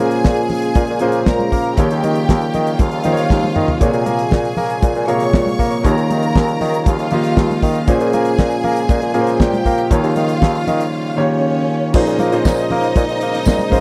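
A straight 4/4 disco groove at 118 BPM drives this danceable clip in Bb dorian, with a damped, up-front 70s drum kit (fat snare, tight kick, a fill around 3.3 seconds) and softly played, high-tuned congas in the background, while a jingly tambourine slips in only at 12.5 seconds. A vintage-sounding bassoon with light vibrato carries the bass line under a clear, long-sustaining grand piano playing the accompaniment, lush bowed strings adding a focused second line, and a dark, distant French horn section holding very quiet sustained chords. The harmony rocks between Bbm7 and Eb9 before opening onto Bbm11 at 11.9 seconds, all captured in a dry, close 1970s-style studio sound.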